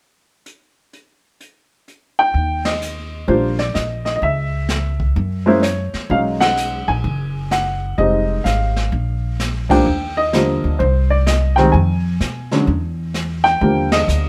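Playful and relaxed, this swinging jazz piano trio excerpt at 128 BPM opens with a dark, smooth brush drum kit at 0.5 s, before an up-front upright piano with short sustain takes the melody at 2.2 s and a thumpy, woody pizzicato upright bass on gut strings joins at 2.3 s, the band hitting shared accents over changes that begin on Ebmaj7, all captured live in one lightly reverberant room.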